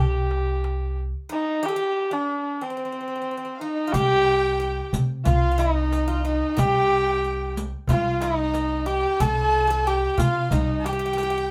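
A nasal, earthy kamancheh sings a melancholic, soulful melody up front with light vibrato and portamento over a thumpy, woody pizzicato upright bass, a metallic double-strung bouzouki in the background and a clay-shelled darbuka entering at 0.3 seconds, before a lush violin section joins softly at 3.5 seconds and a riq with dark jingles adds close, dry percussion from 3.9 seconds in this moderately reverberant Turkish makam ensemble piece.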